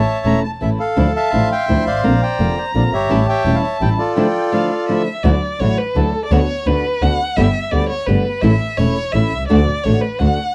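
A reedy bandoneon carries the melody from the opening of this sultry, melancholic tango in 3/4, played rubato at 169 BPM in D minor, over an intense, biting bowed double bass up front, very quiet string-section stabs, and a fingerpicked flamenco guitar that enters at 0.2 s. The bandoneon stops at 5.0 s, and at 5.2 s the music turns to D major as the distant violin, which has carried a second line from the start, takes an expressive solo full of vibrato and portamento until 10.5 s. The dry, close sound has a 1970s studio character, and the passage is cut from a longer piece.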